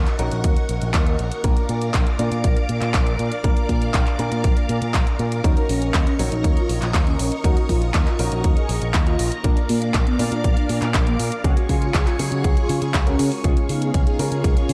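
A straight 4/4 pulse comes from a punchy, overdriven electronic kick up front and an overdriven house kit of handclaps, hi-hat and toms, while a bright picked electric bass with an envelope filter anchors this bittersweet, nostalgic italo disco excerpt. A lush sawtooth string machine holds sustained chords with ensemble chorus and shimmer reverb, and a vintage grand piano with 12-bit sampler grit and short sustain plays stabs in the background. At 5.4 seconds a mellow, detuned synth brass takes the melody with chorus, digital delay and vibrato, and from 13.4 seconds a drum fill and a filter sweep on the piano round off the passage in a dark production.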